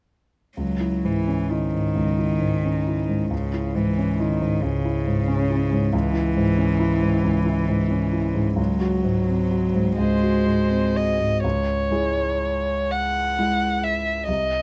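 A slow 6/8 metre, counted in dotted quarters at 40-47 BPM and stretched by rubato, carries this elegiac, melancholic classical movement in C# minor, cut from a longer piece. A clear grand piano supplies the accompaniment throughout, present and long-sustaining as it spans from deep bass into the middle register. Alongside it, a single cello bowed sul tasto sings a warm second line in its low register, with light vibrato, a soft attack and an airy, intimate tone. At 10.0 s a single violin takes up the melody, smooth and even with vibrato and a smooth upper edge, just as the harmony settles from a G#7 over a C# bass back to C# minor for the second section at 11.4 s. Close, detailed microphones and very little reverb keep all three instruments up front.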